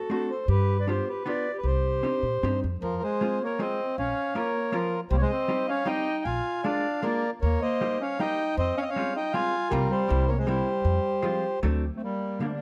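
A close, detailed recording with light reverb frames this short excerpt from a longer musette waltz in F minor, moving at 156 BPM in 3/4 with a rubato feel and a bittersweet, nostalgic mood. A reedy, round accordion sits up front carrying the melody, while a soft-attack clarinet in a classical style shapes a second line alongside it. A dark, clean hollow-body electric guitar, picked and compressed, supplies the accompaniment from 0.1 seconds. The woody, growly pizzicato upright bass enters at 0.5 seconds and stands forward in the mix until 11.9 seconds. The harmony wanders from G7 and Cmadd9 into a longer passage through Fm, Bbm, Eb and a C7sus4 resolving to C7, before turning toward D7 and closing on Gm.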